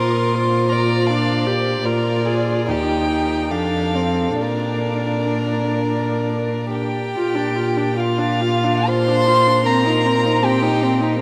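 Up front, a cello plays a soft-attacked bass line with light vibrato and an airy, sul tasto bow, anchoring this slow, serene romantic movement for string quartet. Above it, a dark, woody violin carries the lyrical melody with vibrato and a smooth top, while a second violin floats a pure, soft second line played sul tasto. The viola fills the middle with an intimate, close accompaniment, bowed over the fingerboard with vibrato. In 3/4 at a rubato 58-82 BPM, the music moves in Bb major through Bb, Bb7, Eb and F before a new passage opens at 7.2 s and arrives on Cm7 over Bb near the close. A huge, wet reverb with an 8.1 s tail places the quartet in a vast, echoing space, with vinyl crackle beneath, in this brief passage cut from a longer piece.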